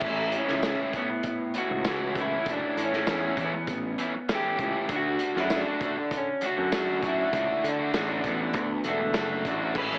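Indie rock excerpt, upbeat yet wistful, where a dark, slightly broken-up lead guitar through a small old amp carries the melody with dub echo over a double-tracked, overdriven semi-hollow guitar riff placed up front, a growly fuzz bass, and a loose drum kit with dark cymbals, tambourine and its own dub echo, all set in an echo-heavy AM-radio sound with a moderate echo-chamber reverb as the harmony shifts from Aadd9 to D at 4.9 seconds.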